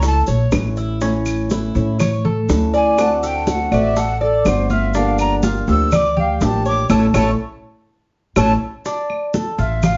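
A sultry, warm Cuban son and guajira groove opens with a breathy, expressive metal flute carrying the melody through plate reverb, over metallic, double-strung tres arpeggios, thumb-plucked flamenco guitar and a dark, thumpy pizzicato upright bass. The tres and bass sit up front, while tight, soft-handed bongos and bright high-tuned congas stay in the background, grainy vintage maracas shake along, and small-room claves join at 0.5 seconds. The band accents the flute solo's final stretch with a drum fill from 8.1 seconds, the guitar drops out at 8.5 seconds, and the whole passage sounds heard from further back in a reverberant studio.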